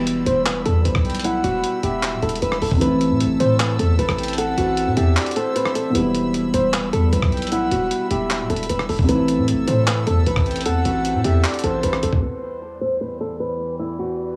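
A half-time trap beat at 153 BPM in 4/4 drives this melancholic, eerie hip hop fragment in E minor, built on a gritty, compressed sampler-style kit of thumpy kick, handclaps, hi-hat and rim click sitting up front, with the kick dropping out briefly at 5.2 seconds. Beneath it, a distorted, aggressive 808-style bass with a fast attack and decaying tail carries the low end. A thumb-plucked flamenco guitar, acoustic and shadowy through a low-pass filter and analog delay, carries the melody over a mellow, boxy grand piano with long sustain that also trails analog delay. Soft-attack strings played sul tasto float in close as sustained ensemble chords, while a breathy, flute-like synth lead with chorus, vibrato and delay adds a hushed second line above. The harmony rocks between Em and Am in an echo-heavy mix with small-room ambience, and at 12.2 seconds the beat, bass, piano and synth fall away, leaving guitar and strings under a filter sweep until the cut.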